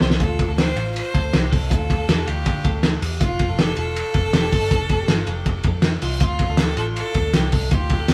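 Jangly indie pop in D minor at 160 BPM, this short cut from a longer piece feels bittersweet and wistful, opening on a drum fill from a cloth-damped, thuddy kit with a fat snare and muffled, dark cymbals, set up front under light reverb as a band playing live in one room. A twangy twelve-string electric guitar picks compressed, clean arpeggios over a round, punchy, foam-muted vintage bass, while a bright, close solo violin carries the melody from 0.2 s with vibrato and an airy, intense bow across Dm7 and Fmaj7. Very quiet, hollow group handclaps arrive at 6.6 s, sounding distant as if in a large room.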